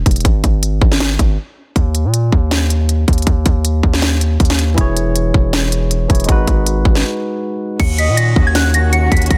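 A dense, heavily limited modern mix in digital ambience carries this dark, hard-hitting trap fragment at 159 BPM in a half-time feel, set in Eb phrygian with the distorted, saturated 808-style bass and the trap kit's hard-clipped kick, sharp snare, crisp hats and crash sitting up front from the start. A barky, lightly overdriven tine electric piano enters at 4.7 s, and at 7.8 s, over an Ebm7 chord, a soft FM synth bell with chorus and digital delay takes the melody high above woody, distant symphonic strings holding lush bowed chords. A smooth, gliding portamento lead with chorus, phaser and delay flickers briefly in the background on Eb5.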